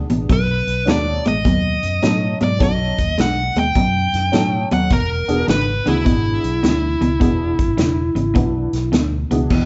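Rollicking and gritty, this electric blues shuffle moves at 104 BPM in 4/4 with a swung eighth-note feel, and it is cut from a longer piece. An electric guitar through a small old amp plays the low riff from the start, its tone slightly broken-up and compressed, while a fingered electric bass sits beneath it with a round, amped sound. A natural country drum kit joins at 0.1 seconds with punchy kick, medium-tuned snare, hi-hat and crash cymbal, and a honky-tonk upright piano adds jangly, detuned, woody accompaniment in the background. At 0.3 seconds a dark, smooth lead guitar with overdrive comes up front carrying the melody, playing until 8.9 seconds as the harmony moves from B7 to E7. The band sounds like it is playing live in one room, wrapped in a moderate large studio reverb, with a dulled top end that adds to the vintage character.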